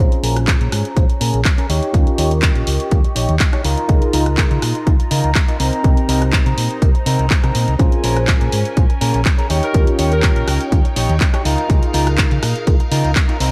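A punchy, tape-warm electronic kick sits up front in this funky, groovy filtered disco house excerpt. A layered house kit of handclaps, hi-hat and rim click with pumping hats, a very quiet, close tambourine, and a dark, round hollow-body electric bass with tube saturation carry the groove, while a clean fingered electric guitar riff with analog delay, a reedy electric piano through a phaser, and biting string chords in the background pump under a low-pass filter over a Bbm7, Eb7, Db69 and Cm7 progression. A filter sweep runs through the whole passage, a bright, tight horn section adds a brief Bb4 line at 9.6 seconds, and the echo-heavy mix carries light digital ambience.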